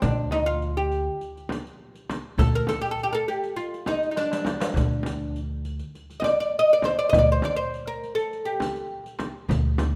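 Longing and hypnotic, this excerpt from a longer Arabic maqam ensemble piece sets a fretless, plectrum-plucked oud with a woody, double-strung voice up front as the melody, over a growly, thumpy pizzicato upright bass sitting low on D2. Behind them, a crisp, compressed metal-shell darbuka played with hard hands, a deep, close frame drum, and a riq with dark, vintage jingles keep a straight 4/4 pulse, with a drum fill at 4.2 seconds. A moderate recital hall reverb gives the whole ensemble a natural sense of space.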